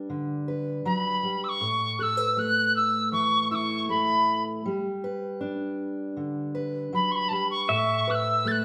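A pure wooden whistle carries the melody from 0.9 seconds, its chiff and crisp attack joined by a gentle vibrato and a slightly unsteady, distant character, in this hopeful acoustic folk excerpt in A mixolydian at a relaxed 79 BPM. Underneath, a fingerpicked steel-string acoustic guitar with fresh strings and audible finger squeak moves between Gmaj7 and Asus2, sounding warm and close in a live room bathed in lush studio reverb. At 7.7 seconds a bright, twangy pedal steel guitar slides in with clean, compressed volume swells as a second line.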